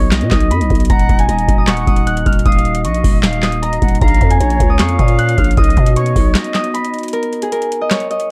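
Dark, small-room production frames this brooding, hard-hitting half-time trap cut at 154 BPM in Eb minor, where a booming analog drum machine with a deep kick, crisp snare, handclaps and metallic hats sits up front beside a growling, buzzy 808-style bass, while a ringing, fingerpicked Celtic harp carries the melody over glassy, ethereal glass harmonica chords and an airy jazz flute second line with vibrato and tape echo, before the bass drops out at 6.4 seconds and the drums and harp carry on alone from 7.1 seconds over a chordless final stretch.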